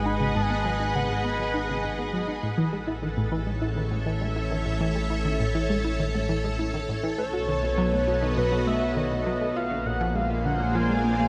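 Ambient, sequencer-driven space music with an expansive, mysterious mood, this short section is cut from a longer piece and moves in a straight 4/4 pulse. A lush, vintage string machine holds sustained chords throughout, sitting up front with ensemble chorus and shimmer reverb, while a fat, thick analog bass with a detuned, evolving character and tube saturation anchors the low end. An analog pluck with a round, nasal tone and a fast attack and short decay carries a riff across nearly the whole passage, colored by chorus, phaser, shimmer reverb and delay, and a filter sweep runs over the arpeggiated synth sound from start to finish. A dark, shimmering pulse-width lead sings a melody briefly at the opening, drops out at 1.8 seconds, and returns at 7.2 seconds, its vibrato and chorus trailing into delay and shimmer reverb. The harmony drifts from G#m7 to A, then B7 and A#7, all bathed in a huge, wet ambient reverb with a long tail of 8.3 seconds.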